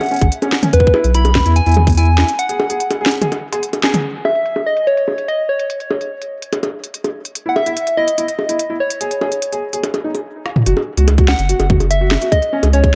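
A gentle, keys-like synth lead opens this playful, wistful IDM clip together with an organic electronic kit of bongos, crisp hats, a woody snare and toms, both placed up front and trailed by dub echo. The lead is a round, warbling FM tone with a bright, chorused shimmer and quick decaying notes, while low-pass filtering dulls the kit's percussion and room sound. Underneath, a felt-muted upright piano plays soft, mellow arpeggios roughened by vintage 12-bit sampler grit, and a deep, round sine sub bass and tight electronic kick anchor the opening bars. A break at 2.4 seconds drops the chords out and leads to a band accent, and a filter sweep then runs over the drums through the middle stretch as the bass and kick sit out. A drum fill at 10.5 seconds brings back the opening material, with the bass and kick returning in an echo-heavy, lightly reverberant mix that is cut from a longer piece.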